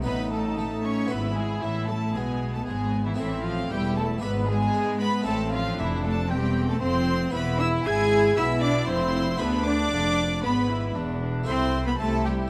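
A single dark, reedy cello carries the solo line in this driving, dramatic baroque-style concerto movement in A minor, its gut-string period tone clear against the ensemble from the very start. The music moves at a steady 116 BPM in 4/4 with a straight feel, and this short excerpt comes from a longer piece. A warm violin section also carries a melody high above the soloist, while a second violin section sings a lower supporting line, both with light vibrato. A distant-sounding viola section fills in the harmony, and a bowed cello section with a smooth top sits in the background beside a double bass section that anchors the bass. A brilliant French-style harpsichord with octave strings plucks its accompaniment quietly in the background, adding sparkle to harmonies that move from B7/A through E/G#, Am and E7 before settling on Am/C. Close, detailed microphones capture the players in a moderate concert hall reverb with a 1.9-second decay.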